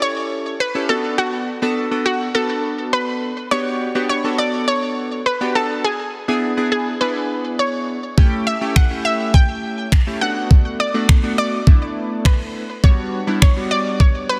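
An analog pluck carries the melody from the opening moment, its round, warbling, detuned sawtooth tone colored by chorus and a digital delay, while chorused retro synth keys fill in the harmony beneath it with a glossy, airy pulse-wave sound that pumps against a sidechain. This bittersweet yet energetic dance-pop passage moves in a straight 4/4, cycling through A7, Bm7, Gmaj7 and E7 before returning to A7, Bm7 and Gmaj7. At 8.2 s a smooth R&B drum kit arrives up front, pairing finger snaps with a knocking electronic kick and adding soft clipping on the snare, then drops out at 14.1 s. Both synth parts share a bright character with filter sweeps and quick, decaying notes. A lush hall reverb lends a digital ambience, and the dense, heavily limited modern master keeps the sound full in this short cut from a longer piece.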